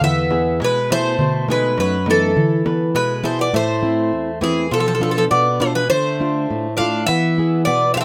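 A moody, brooding slice of Greek folk from a bouzouki band, cut from a longer piece and moving at 102 BPM in a straight 2/4 in A harmonic minor. Up front, a picked bouzouki carries the melody with the metallic ring of its double strings, some of them octave-doubled, while a second bouzouki plays a lower line beneath it. A fingerpicked flamenco guitar, also placed up front, supplies the accompaniment with a warm tone. A crisp, high darbuka with a small metal shell sits in the background under hard hands, dropping out at 3.5 s as the harmony turns from E and B7 toward Am, Bdim and Dm before settling back on E. Close, detailed microphones and light reverb give the strings an intimate presence.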